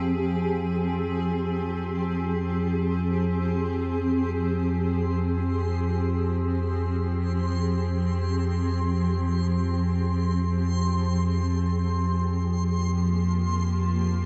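Floating in free time, this dark, unsettling ambient drone rests on a deep, ominous, wave-folded rumble and a blurred, evolving granular cloud pad that holds sustained chords, both sitting up front. A faint, bright, reversed texture fades in high above them across the whole 14.3 seconds, while the harmony shifts at 11.3 seconds. A huge, wet reverb surrounds everything, giving this fragment of a longer piece a cavernous, dreamlike haze.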